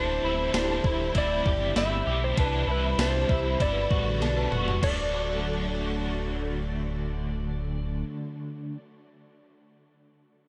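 This floating, ethereal dream pop excerpt in D mixolydian moves at 98 BPM in a straight 4/4. It opens on a bed of sound: a swirling, warbling string machine holds sustained chords through chorus and phaser, while a dark, overdriven guitar with tremolo and chorus plays accompaniment. A slightly broken-up guitar picks arpeggios through chorus and tape echo, and a deep, sine-toned sub bass with an added octave sits up front. Above them, a dark, compressed slide guitar carries the melody through tape echo, and a very quiet celesta adds delicate, bell-like texture. A gated 80s drum machine comes in at 0.5 seconds with a thumpy kick, gated-reverb snare, tambourine, ride, crash and toms, plays a fill at 4.2 seconds, and stops at 5.0 seconds. The chords move from D9sus4 through C and Gmaj9 to D, and the whole mix sits in a light reverb.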